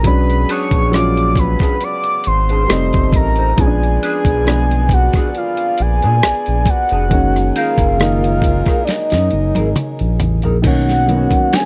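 A dusty, gritty, sampler-style drum kit sets a relaxed 68 BPM neo-soul groove in 4/4 with a light sixteenth-note swing, its thumpy kick, medium-tuned snare, rim clicks, finger snaps and hi-hat sitting up front, with a drum fill from 8.9 to 10.6 seconds. A smooth, dark synth bass glides beneath woody upright piano chords, while a round, full-bodied octave-layered synth lead carries the soulful melody through chorus, phaser and slapback echo. An electric guitar through a small, slightly broken-up amp adds a lo-fi wah second line from 0.5 seconds, and a muted, nasal French horn section holds distant chords in the background until 10.6 seconds, all within a dry, close 1970s-style studio sound in this excerpt.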